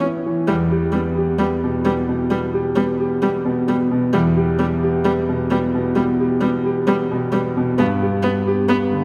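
A wet church reverb with a 3.4-second decay surrounds this short cut from a longer neoclassical piece for piano and strings, set in E minor at a rubato 66 BPM in 4/4 and tuned to A4 = 442 Hz. Up front, a concert grand with deep bass, a boxy tone and long sustain plays accompaniment from E2 to G4 across the full 9.0 seconds, resting on E minor before moving to G at 7.8 seconds. Beside it, a single close, intimate viola bows sul tasto in a narrow range around G3 to B3 with light vibrato, a soft attack and an airy edge, falling silent at 8.8 seconds and leaving a reflective, melancholic mood.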